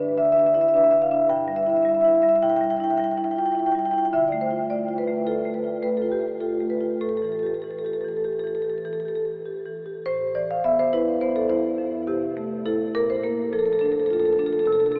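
A solo marimba played with medium mallets sits up front, its warm tone ringing from a low F2 up to G5 across this short cut from a longer contemporary classical piece. The music moves in a five-beat metre with a free, rubato feel, creating a hypnotic, reflective mood. The harmony drifts through colors such as Em/G, Dm and Asus2 before reaching the rich Fmaj9 and, at 12.9 seconds, Bbmaj7 near the close. A huge, wet reverb with a decay of 7.7 seconds places the instrument in a vast, echoing space, so each note blooms and lingers. Yet the sound is filtered through a thin, boxy AM radio character, giving the recording a distant haze.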